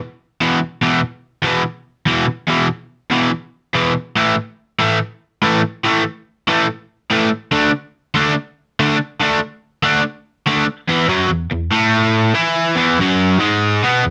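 Swaggering and rowdy, this rock excerpt drives along at 143 BPM in a straight 4/4, centred on E mixolydian. A lone crunchy overdriven electric guitar carries the whole thing, entering at 0.4 seconds and playing solo through to the end at 14.1 seconds, picked and double-tracked so it sits bright and up front. Its range spans E2 to E4, moving through power chords on E5, A5 and D5 before settling onto a full E chord as a new section arrives at 10.9 seconds. The guitar's crunchy, overdriven tone is framed by a light reverb that gives the room a touch of space. The tuning sits slightly sharp of standard, at A4 = 442 Hz, and the clip is cut from a longer piece.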